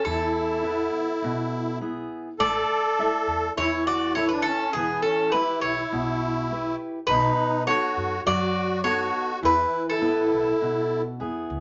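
A bright, metallic Greek bouzouki leads this short Greek folk excerpt, its picked double strings, some doubled at the octave, carrying the melody up front at a relaxed 102 BPM in 4/4 with a straight feel. Beside it, a reedy musette accordion with its shimmering, wet tuning plays a second line, also placed close to the listener. A dark fingerpicked steel-string acoustic guitar, with the occasional finger squeak, fills in the accompaniment, while a woody, thumpy upright bass on gut strings is plucked low underneath. In A major, the chords move from E through A, Em and B7 before settling back on E around 9.4 seconds, giving the band a hopeful, easygoing mood. The recording sits in a wet studio reverb with a soft, rounded top end, and the clip ends at 11.6 seconds as it is cut from a longer piece.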